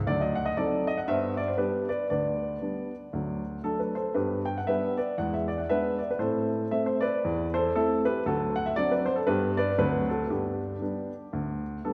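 A lush, wet reverb surrounds this short cut from a longer jazz piece, giving it the roomy ring of a church or concert hall, with a tail of about 2.0 seconds. At the center is a single upright piano, woody and natural in tone and placed up front, playing alone from 0.1 seconds to the end. The style is stride piano at 117 BPM in 4/4, with a swinging, playful feel and a light swing on the eighth notes. Set in G major, the piano ranges from D2 up to G5 and moves through a classic progression that opens on D7b9, settles onto G, passes through E7 and Am, and turns back home through D7 to G. The result is a buoyant, good-humored snapshot of traditional jazz piano heard in a generous, resonant space.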